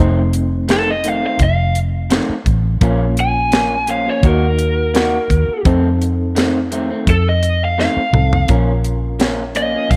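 Light reverb and a small-room ambience frame this smoky, soulful straight-eighth soul blues in Bb minor at 85 BPM, cut from a longer piece. A round, punchy foam-muted electric bass and a dry, tight funk kit with a high-tuned snare sit up front, while a slightly broken-up picked guitar through a small old amp adds stabs with subtle chorus and a barky, reedy electric piano comps with medium tremolo. From 0.7 seconds a dark, overdriven lead guitar through a small cranked amp plays a lo-fi solo, and a drum fill at 7.8 seconds leads into a new section on Bb minor at 8.5 seconds.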